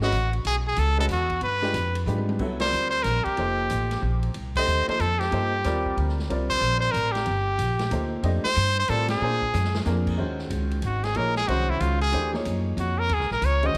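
Bathed in a moderate echo-chamber reverb, this intense, spiritual modal jazz excerpt swings in 3/4 as a brilliant, forceful trumpet with scooped notes and light vibrato carries the melody over a clear, slightly detuned upright piano, a woody, thumpy pizzicato upright bass and a big-band drum kit with a punchy kick, with band accents and drum fills leading into a trumpet solo from 10.2 s.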